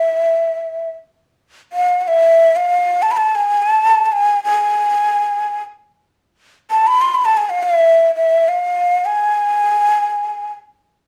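A breathy, end-blown reed-cane ney plays alone from 0.0 to 10.5 seconds in this festive, warm excerpt of Persian modal music in free time and the E dastgah homayun, its close-miked, unsteady line ranging from E5 to C6 with vibrato, a soft attack and a slapback echo, set up front in a wet studio reverb within a rough home-demo mix.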